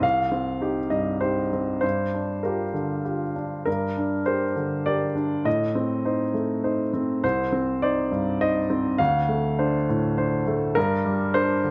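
In a rubato 3/4 at 101 BPM, this short cut from a longer contemporary classical piece for solo piano moves with a fragile, longing sway in G minor. A clear baby grand piano carries everything alone for the full 11.7 seconds, ranging from C2 up to F5, its tone polished and present, set up front by close, detailed microphones. A slapback echo on the piano adds a doubled edge to each note, while light reverb gives the room a gentle halo. The harmony drifts from Cm through Gm7 to Gm, darkens on Adim, and returns through Cm and Dm7 before settling on Gm at 10.8 seconds. The opening phrase comes back at 3.7 seconds and is stretched out longer the second time, deepening the sense of yearning.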